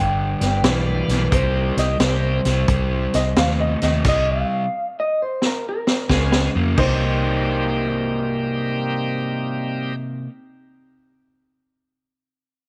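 A swung shuffle in four drives this soulful, smoky electric blues, carried by a punchy vintage drum kit with dark cymbals and a high-tuned snare, a round, foam-muted fingered bass and an overdriven semi-hollow guitar riff up front. A slightly broken-up, compressed guitar through a small old amp carries the melody with subtle chorus, while a bright, shouting tonewheel organ with key click and slow rotary speaker fills in beneath, and a worn, woody upright piano with audible action noise and slight detuning adds a second line from 3.1 s. The band hits a stop at 4.1 s, and a drum fill from 5.4 s leads into a new section at 6.8 s.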